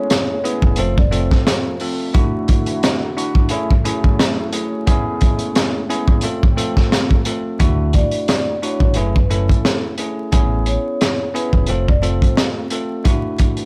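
Soulful and nostalgic, this boom-bap hip-hop excerpt moves at an easy swung pace, its dry, gritty small-room sound dusted with vinyl crackle. A crunchy breakbeat kit sits up front from 0.1 seconds, its high-tuned snare, tight kick and hi-hat saturated and rolled-off on top. A bell-like tine electric piano carries the chords throughout, clean and bright as if through built-in speakers, while a dark, detuned analog pad with chorus hums very quietly underneath until 7.6 seconds. A mellow vibraphone played with soft mallets rings briefly at the start and returns for the melody from 7.9 seconds, its slow motor vibrato and analog delay giving it a boxy, metallic glow. A deep, round dub bass with tube saturation stays in the background, joining in a short burst near the start and then more steadily from 7.6 seconds as the second section begins over the Amaj7, F, Dadd9 and F#m7 cycle.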